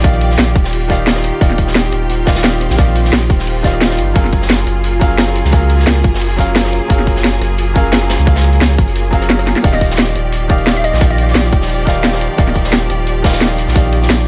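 A small room ambience frames this uplifting, dreamy liquid drum and bass excerpt at 175 BPM in Eb major, where a clear concert grand piano with delay and a lush, bowed string section pumping to the sidechain carry Ebmaj9 and Gbmaj9 chords over a round, up-front sine sub bass, a tight overdriven electronic kick, a drum and bass kit with a cracking snare and bright hats, and a gritty, saturated breakbeat kit, with a drum fill at 9.5 seconds just before a glassy, crystalline wavetable pluck with chorus and delay appears in the background from 9.7 to 11.4 seconds.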